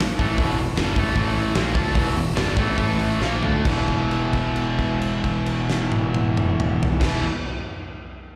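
Heard through a venue's PA in a live gig, with the reverb of a recital hall and a light reverb around it, this short cut from a longer hard rock piece has a swaggering, anthemic feel in straight 4/4. A cranked stack guitar plays an overdriven, picked riff colored by spring reverb and slapback echo, and a tight distorted guitar also plays a riff with its own slapback echo and a similarly bright, picked edge. Underneath, a modern bright fingered electric bass sounds direct, growly and punchy. A huge arena drum kit sits up front with a fat snare, punchy kick, gleaming cymbals and toms in a hall-like space. The harmony moves between E5 and A5 before an A#maj7 arrives, while the music slows down from 0.4 seconds on, continuing through a drum fill that begins at 3.2 seconds. The fill leads into a return to E5 and a held note that rings from 3.7 seconds to 7.0 seconds.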